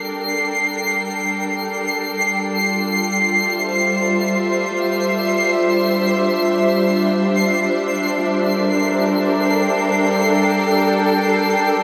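Ambient and reflective, this serene passage cut from a longer piece drifts in free time, with a symphonic string section fading in on sustained bowed chords, smooth and even, carrying a light vibrato. High above, a twinkling granular texture adds a sparkling, octave-up shimmer with slow attacks and long releases, bathed in its own reverb. The whole sits in a vast, echoing cathedral space, moving from Gmadd9 to Fmaj7/G at 2.6 seconds and returning home at 8.1 seconds.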